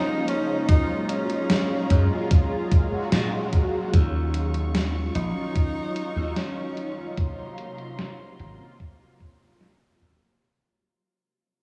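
A straight 4/4 pulse from a thumpy, up-front electronic kick and a gated 80s drum machine's filtered hi-hat and gated-reverb snare carries this dreamy, faded vaporwave fragment, where a close-miked tenor saxophone sings a vibrato-laden jazz line until 7.2 s over round, detuned synth brass tinted with phaser and chorus, smooth bowed strings in the background, and a bright, punchy slap bass that enters at 1.9 s, in a mix soaked in huge reverb and cassette haze that fades out from 3.9 s.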